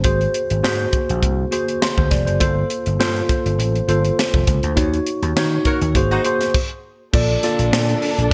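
Bright, glossy 1980s-style digital production with plate reverb frames this upbeat jazz-funk pop excerpt at 102 BPM with a light swing, where a worn, slightly out-of-tune tine electric piano with lush chorus plays a fill at 1.5 seconds over punchy amped slap bass and a tight, dry funk kit with gated reverb and a high-tuned snare, through Ab9, Gm11 and Ebm7 chords, a band accent and a stop, with a brief mellow jazz horn section line at 5.7 seconds before bowed studio strings enter with expressive vibrato on Bbmaj7 at 7.1 seconds.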